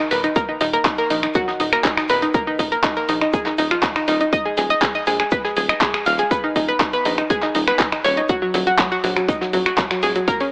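Heard through an AM radio filter and a lush hall reverb, this expansive, emotional progressive house passage, cut from a longer piece, is carried by a round, chorused analog pluck playing sidechain-pumped arpeggios with digital delay, while a tight sawtooth sequencer bass pumps beneath, a punchy, tape-warm electronic kick sits up front, a deep house kit of finger snaps, handclaps and hi-hat is re-recorded in a small room, and a very quiet soft brush kit adds hi-hat, shaker and a fat snare.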